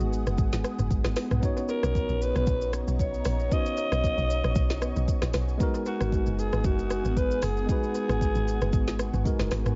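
Amapiano at 115 BPM in 4/4, this soulful, warm short cut from a longer piece moves with a lightly swung sixteenth-note feel over a G#m7 to Bmaj9 progression that returns to G#m7. A deep, round log drum bass sits up front with a dark, percussive bite and a noisy edge, alongside an electronic afro-pop drum kit whose overdriven sound pairs a deep kick and woody snare with warm hats, rim clicks, shaker and toms, all touched with analog delay. A breathy alto saxophone carries the melody with vibrato and a raspy, gritty grain under a smooth top, its delayed lines ending at 9.2 seconds. A clean tine electric piano supplies accompaniment with analog delay, while an ethereal, airy pad holds mellow, full-bodied chords in the background through ensemble chorus and reverb. The echo-heavy mix has light digital ambience and a soft, rolled-off top end.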